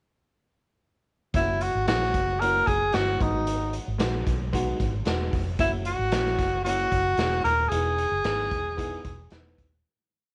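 A raw garage drum kit sets a straight backbeat soul groove at 113 BPM in 4/4, its tight kick and medium-tuned snare dark and smooth with a rolled-off top, while a foam-muted, round electric bass plays a syncopated, melodic line with chromatic approach notes. A worn, woody, slightly detuned upright piano keeps a quarter-note chord rhythm in close voicing as the tenor saxophone, up front with vibrato and a soft attack, delivers a jazz-style solo built from song-like motifs over F#7, G#m7 and Emaj7. This short, danceable piece of uptempo 1960s-style soul in F# mixolydian sits in a small room and fades out from 7.7 seconds.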